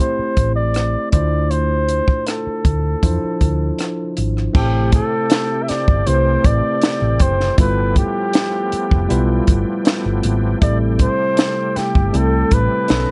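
A breathy, whispered flugelhorn carries the melody up front with light vibrato and a soft attack in this cinematic, smooth 1970s-style soul piece, moving at 79 BPM in A minor over a clean tine electric piano played through a combo amp, a round, dark hollow-body fingered bass and a dry compact cocktail kit with a punchy kick, high-tuned snare, rim clicks and dark cymbals. At 4.5 seconds a gritty, overdriven tonewheel organ enters with sustained chords, third-harmonic percussion and chorus vibrato, joined at 4.6 seconds by a very quiet, slightly out-of-tune celesta whose bell-like, delicate tones add texture. The chords move from Am7 through Dm9 and E7b9b13, then on to G13 before returning to Am7, all under light reverb in this excerpt cut from a longer piece.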